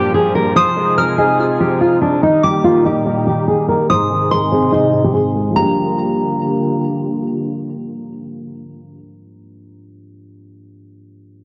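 Brooding and eerie, this hip hop piece moves at 144 BPM in 4/4 with a half-time feel, set in G phrygian and tuned slightly flat to A4 = 438 Hz. A picked steel-string acoustic guitar carries the melody up front, its dreadnought body sounding warm, with audible finger squeak, until 6.8 seconds. Beneath it, a dark grand piano plays mellow, vintage-toned accompaniment with long sustain through 11.4 seconds, while a close, intimate string section holds bowed chords with light vibrato and soft attack until 8.9 seconds. A soft, pure FM synth bell adds a second line high above from 0.6 seconds, its fast-attack, decaying tones thickened by chorus and tape echo. The harmony passes through Gm7, Fm7, Eb and Ab before returning to Gm7 at 5.6 seconds, where a new section begins after a filter sweep across the opening passage. The mix is dry and gritty, with a dull, rolled-off top end, and the recording is cut from a longer piece.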